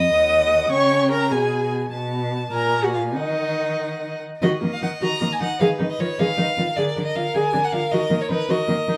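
A warm viola, an expressive cello with portamento and a soft-attacked second violin sliding between notes open this lively, graceful classical-period excerpt for string quartet in Eb minor, a quick 6/8 movement at 93-106 BPM with rubato, joined at 0.1 s by a rich, smooth first violin carrying the melody, each bowed with vibrato in a wet stone room whose reverb lasts 1.0 s, as the harmony moves from Eb minor through Gbmaj9/Bb and Bb7/D back to Eb minor.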